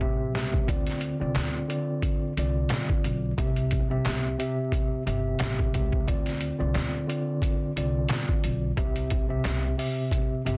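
Boom-bap hip-hop with a moody, gritty character and a lightly swung groove, opening on a short drum fill before settling into a loop of minor seventh chords. A mellow tine electric piano, filtered and tape-tinged, sits up front over a woody, dark pizzicato upright bass, while a compressed, pitched-down sampler-style kit adds a thumpy kick, a medium-tuned snare, hi-hat and handclaps. Light reverb, vinyl crackle and a dense, heavily limited master wrap this brief excerpt.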